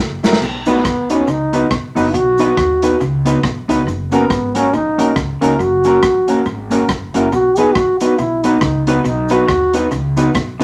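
A short drum fill opens this cheerful, upbeat ska passage in B major, cut from a longer piece and moving at 139 BPM in 4/4 with a swung eighth-note feel. A dark, clean electric guitar plays fingered accompaniment with tape echo, while a very quiet semi-hollow guitar carries a compressed, hollow-body riff low in its range and a woody, thumpy pizzicato upright bass holds down the bottom. A slightly detuned vintage upright piano adds smooth stabs, and a gritty, saturated breakbeat kit with dark cymbals, a tight kick and rim clicks keeps time, its sound also treated with tape echo. A grainy, distant cabasa sits far in the background. At 0.7 seconds a breathy, close-miked trombone takes the solo melody up front, intimate and whispered with light vibrato and a soft attack, until 9.7 seconds. The chords move from B to F# at 3.9 seconds and back to B, all within a moderate club-style reverb.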